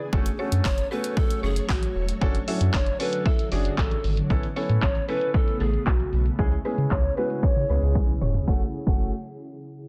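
A straight groove from a punchy analog drum machine drives this energetic, bittersweet dance-pop excerpt, where a thick saturated sub bass and an ethereal pad both pump with sidechain compression, a concert grand piano adds open accompaniment, a soft-attack pan flute with vibrato and dub echo carries the melody over a woody, FM mallet-like pluck in the background, a grainy egg shaker slips in very quietly at 4.3 seconds, and a filter sweep running through the section, joined by a drum fill at 8.0 seconds, leads the chords back to the home minor chord in a dense, heavily limited mix.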